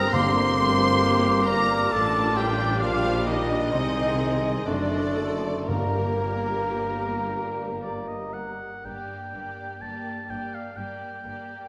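Melancholic and solemn, this slow romantic orchestral movement in G minor moves in a rubato 3/4 at around 56-68 BPM, cut from a longer piece. A lush, focused violin section carries the melody, while a second, softer violin section, a clear oboe, a clear clarinet in the background and a mellow, hollow silver flute weave second lines around it. A distant bassoon and a viola section with expressive portamento fill in the accompaniment, and a very quiet harp adds ringing, thumb-plucked arpeggios. The low end rests on a close cello section, a bowed double bass section and a very quiet tuba, beneath dark, soft-edged French horns and mellow trombones holding sustained chords. Timpani struck with hard mallets mark the opening and return at 5.7 seconds as the harmony settles back on G minor. The whole ensemble sits in a wet concert-hall reverb, and several winds and brass drop away before the closing section begins at 8.8 seconds.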